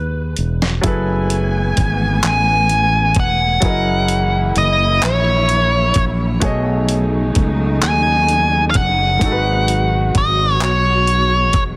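A slow, straight six-eight sway carries this yearning, late-night R&B excerpt, opening with a drum fill from a gritty, compressed sampler-style kit with a thumpy kick, fat snare, hi-hat and handclaps. An overdriven, nasal lead guitar with a parked wah and tape echo sings the melody up front over a warm, direct fretless electric bass, while a smooth vintage grand piano accompanies lower in the mix. At 0.8 seconds a studio string section joins with sustained bowed chords full of vibrato and portamento, and the whole sound is dry, dense and heavily limited.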